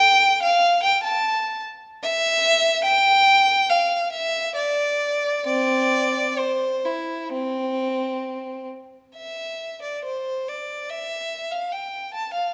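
In a rubato 4/4, this flowing, introspective baroque-style suite movement for unaccompanied violin unfolds as a short cut from a longer piece. A single bowed violin sits up front, its tone clear and smooth with vibrato and an even line ranging from C4 to A5. The opening idea returns at 9.2 seconds, and the whole is wrapped in the wet reverb of a recital hall with a 1.6-second decay.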